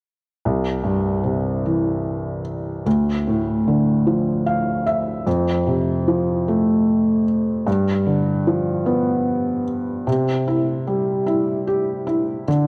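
A felt-muted upright piano carries this short pop excerpt on its own, its soft, mellow tone sitting up front with an intimate closeness and the audible noise of its action coming through the thin felt. The mood is swaying and romantic, moving at 50 beats per minute in a lilting 6/8 with a straight feel in C major. The piano plays an accompaniment spanning C2 to F5, moving through C, Dm, F and G7 before settling back on C at 10.1 seconds as a second section begins. A brief fill from the piano between 4.1 and 5.3 seconds adds a small flourish in the first section. The sound has the character of a home recording on cassette, with the piano carrying a tape coloring and surrounded by a lush hall reverb that lingers for 2.6 seconds. Cut from a longer piece, the passage runs until 12.7 seconds.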